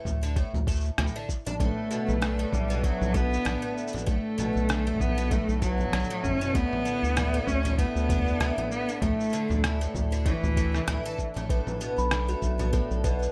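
Folktronica in B minor at 97 BPM with a gentle swing, this short excerpt from a longer piece feels wistful and autumnal. A picked twelve-string acoustic guitar opens alone with bright, shimmering arpeggios, its octave-doubled strings carrying analog chorus and digital delay, with a touch of finger squeak. Almost at once a round, deep analog bass and a muffled, thumpy electronic kick arrive, joined by pitched-down, overdriven electronic congas, shaker and rim click that sound sampled and re-recorded in a small room. At 1.6 seconds a bowed cello takes the melody up front, rich and smooth with vibrato and a trail of delay, while a reedy, breathing pedal harmonium holds vintage-toned chords in the background as the harmony moves from Bm7 to Dsus2 and back. Near the close, at 11.5 seconds, a delicate, slightly out-of-tune music box adds a tinkling second line, all under a light reverb.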